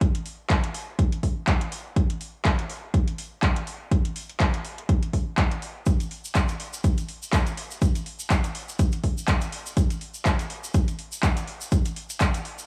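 House groove at 123 BPM in 4/4, with a swing of 56% on the 16ths giving it a loose, deep and moody feel in this short cut from a longer piece. An electronic kick drum sits up front, punchy, layered and overdriven, running from the start to 12.3 seconds. A deep house drum kit of handclaps and metallic hi-hats plays alongside it, also overdriven and set lower in the mix. At 5.9 seconds a tube shaker joins quietly, its grainy, mellow acoustic tone carrying a touch of live room. The sound is dry and close, with only a small room ambience around the parts.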